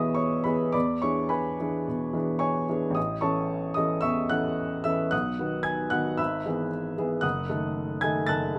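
Rubato and unevenly pulsed around 111 BPM in 4/4, this lyrical, warm romantic character piece for solo upright piano in E major spans F#1 to A6, its woody, intimate tone sitting up front with audible action noise and light reverb as the harmony moves from E through E7, A and B to E/G# and D#dim/F# across an 8.6-second fragment cut from a longer piece.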